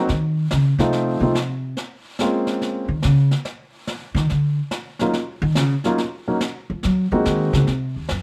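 Close, intimate sound with light reverb places a warm grand piano, its action noise audible, and a woody, thumpy pizzicato upright bass up front, with brushed snare in a small, natural room behind them. This swinging jazz piano trio fragment sits at 142 BPM in Bb minor, with the upright bass taking a solo throughout while the piano carries the melody until 7.7 s and the brushes keep time. The harmony moves from Cmadd11 and F7 through Bbm7, a brief chordless stretch, then Ebm7 to Ab7.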